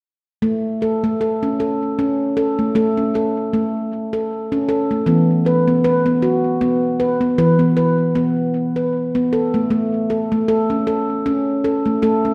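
A solo handpan enters at 0.4 s, its ringing nitrided-steel tones struck with the fingertips and close-miked so they sit full and up front, with a touch of tape echo. This dreamy, calm piece of meditative world music moves at 78 BPM in 3/4 with a gentle swing on the sixteenths. It stays in A major pentatonic, tuned to A4 = 442 Hz, and its harmony shifts from A to E5 at 5.1 s before settling back on A, all inside a reverberant scoring-stage space in a passage cut from a longer piece.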